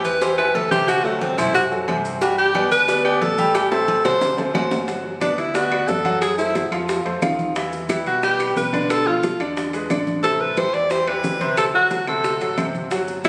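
Heard through a phone in a reverberant concert hall, with studio reverb and compression on top, this lively, danceable Afro-Cuban jazz excerpt moves at 179 BPM in a straight 4/4 in G major. A clear alto saxophone sits up front, taking a solo for the first 4.9 seconds with vibrato, subtone, a soft attack and scooped notes in a jazz style. Beside it, a polished concert grand piano with deep bass carries the accompaniment, while a dark, round, amped fingered electric bass anchors the low end. The percussion stays in the background: low-tuned, thick-skinned congas, tight high-tuned cowbell and bongos, ringing metal-shell agogo bells and timbales, and grainy, saturated maracas, with woody claves very faint in a live room. A drum fill from 3.5 seconds leads into a second section at 4.9 seconds, where the harmony opens onto Gmaj9 and moves through F#m7b5, F7, Em7, Bm7b5 and E7 before circling back to Am7 and D7.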